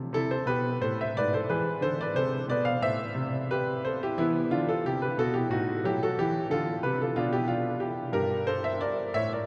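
In a 6/8 at 60 BPM, counted in dotted quarters and shaped with rubato, this grave, flowing baroque-style suite movement unfolds in A minor on a warm grand piano playing alone from 0.0 to 9.5 s, its smooth, vintage tone sitting up front between G2 and F5. The harmony moves from Am through E7/G# and back, shifts to Em and B7, and settles on a Gmadd11 at 8.1 s, all bathed in a long, wet cathedral reverb in this brief fragment cut from a longer piece.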